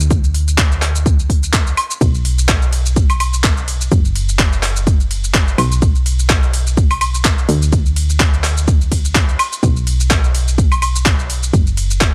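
A round, mellow FM bass with a fast attack and tube saturation pumps against the sidechain, alongside an up-front garage kit of handclaps, crisp hi-hats, ride cymbal, shaker and woodblock that sounds tape-warm and re-recorded in a large room. A punchy, layered electronic kick with overdrive joins at 0.1 s and drives this bittersweet, soulful piano house fragment with a swung sixteenth-note feel. The dry, gritty hardware sound carries through to the cut at 12.1 s.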